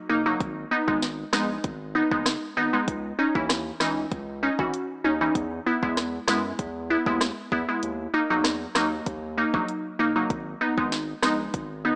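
Bouncy and sultry, this 97 BPM dancehall fragment in G# minor sets an up-front, crystalline wavetable pluck with chorus over a thick, saturated sub bass and an electronic afro-pop kit of deep kick, sharp snare, rim click and hi-hat, cycling through G#m, C#madd9, E and D#m with the kick dropping out from 7.8 to 9.1 seconds, all in a light reverb with a small-speaker sound.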